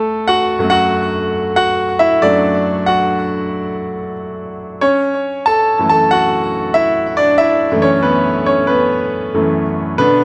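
A clear, up-front concert grand piano plays alone from the first moment, opening on a Dadd9/F# chord before moving to F#m7 at 4.8 seconds in this short cut from a longer pop piece. The mood is anthemic and warm at a steady 93 BPM in a straight 4/4, with the piano, tuned to A4 = 438 Hz, spanning F#2 to A5 so its deep bass sits beneath a smooth, vintage tone. A touch of digital delay on the piano and a moderate large-studio reverb give the 10.2-second passage a spacious sheen.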